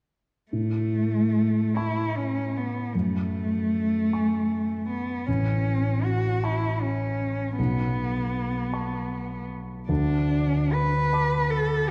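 Classical impressionist duo in A major, luminous and pastoral, moving at a slow 51 BPM in a rubato 6/8 with uneven beats, where an up-front rich bowed cello sings an expressive melody with vibrato, soft attacks and portamento over a dark, mellow grand piano accompaniment whose intimate, vintage tone carries audible action noise, all through a long concert hall reverb of 2.5 seconds as the harmony drifts from A through F#madd9 and Bsus2 to D5 in this short passage cut from a longer piece.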